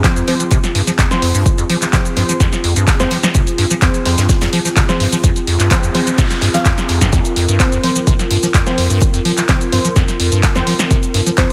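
A straight 4/4 pulse drives this hypnotic, gritty acid house excerpt, anchored by a punchy analog electronic kick sitting up front and a punchy analog drum machine supplying handclaps, hi-hat, shaker and a punchy snare, both re-recorded in a small room. Far beneath them, a very quiet tight funk drum kit adds dry, airy hi-hat and a high-tuned snare. A rubbery, resonant square-wave acid bass riff runs throughout, its filter sweeping through tube saturation, lush chorus, tape echo and sidechain pumping. Over it, a dark, detuned analog pad holds moody sustained chords with a slow attack, sub octave and ring modulation, while soft, mellow chord stabs decay through ensemble chorus and tape echo. A background noise sweep passes between 5.6 and 7.1 seconds, and the whole mix carries light reverb and a heavily compressed, radio-like sound.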